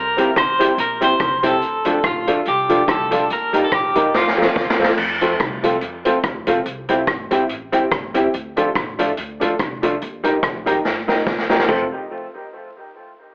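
A slightly broken-up electric guitar with tremolo and dub echo carries the melody over a woody pizzicato upright bass in this bouncy, joyful ska excerpt at 143 BPM with a light swing in F major, as a clean, compressed hollow-body jazz guitar and a mellow, vintage upright piano add dub-echoed accompaniment and stabs. An up-front street-band kit with a boomy kick, dark cymbals and rim clicks plays fills at 4.1 and 10.8 seconds, the lead guitar drops out at 4.8 seconds, and the whole is coloured by vinyl crackle, a telephone tone and moderate studio reverb.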